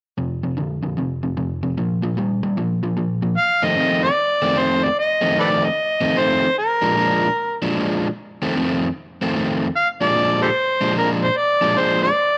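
Gritty and soulful, this swung blues in F mixolydian moves at 150 BPM in 4/4, with a moderate shuffle lilt on the eighth notes, and is cut from a longer piece. An overdriven, picked semi-hollow electric guitar opens the track at 0.2 seconds with a riff over F5 and Bb5 power chords. At 3.4 seconds an amplified harmonica enters up front, taking a jazz-style solo that is gritty and edged with light vibrato. Its soft-attacked, scooped notes and tongue slaps ride over the guitar as the harmony shifts to F7 and Bb7. The recording sits in a moderate echo-chamber reverb with a touch of small-room ambience, and lossy compression artefacts lend the sound a slightly worn quality.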